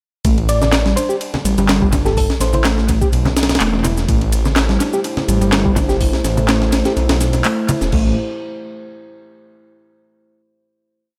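This breakbeat piece in A minor moves at 125 BPM in 4/4, with a light swing on the sixteenths and a raw, funky mood. Its main body is a drop over an Am7 chord that runs to 7.9 seconds before a closing chord rings out. Up front sits a gritty, pitched-up sampler-style break, a compressed looped breakbeat with edits, a thumpy kick, a medium-tuned snare, hi-hat, ride and crash, all touched by tape echo. Beneath it, a quieter garage kit layers electronic handclaps, shaker and ride, re-recorded in a small room, while bright, close and dry congas loop softly in the background. A thick, menacing detuned saw bass holds long gliding notes up front, and a reedy electric piano, heard through its built-in speakers, repeats a 32-step sequence with tape echo. Early on, a round, tine-like FM pluck with a small-speaker tone and chorus plays short phrases, and from 4.1 seconds a deep, nasal analog pad with chorus and sidechain pumping spreads moody chords through light reverb and digital ambience in an echo-heavy mix.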